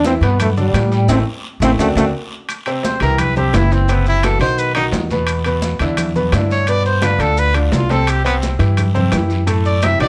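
Close, detailed microphones and light reverb give this danceable, sunny salsa excerpt at 172 BPM a crisp sound, with a growly, woody pizzicato upright bass up front and a bright, short-sustain upright piano comping over chords such as Em7, Am and D7. A warm, punchy trombone with vibrato carries the melody until 2.1 seconds while the band hits an accent from 1.1 seconds, and a clear, roomy trumpet with light vibrato takes an up-front solo from 2.8 seconds. Ringing high-tuned congas, metal-shell timbales, a raspy guiro and grainy maracas fill out the background percussion.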